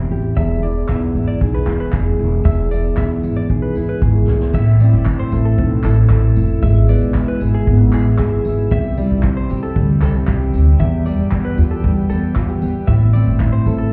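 A straight 4/4 groove from a gritty, dark-cymballed brush kit with handclaps and tambourine drives this wistful, tender acoustic pop fragment, where a full-bodied jumbo steel-string guitar and a woody, thumpy pizzicato upright bass sit up front, a twangy, scooped clean electric guitar adds lush-chorused arpeggios, and after a drum fill a shouting tonewheel organ with a slow rotary speaker enters at 4.5 s with sustained chords in the background, the whole sounding muffled through a wall like an old cassette.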